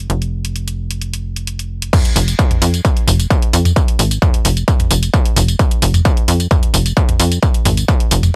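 Driving peak-time techno in F minor at 131 BPM, industrial and hypnotic, where a tight, nasal sawtooth sequencer bass pumps against an overdriven kit of crash, hi-hat, tambourine and toms before the drop at 1.9 seconds brings in a distorted, up-front electronic kick, all in a dry, close mix.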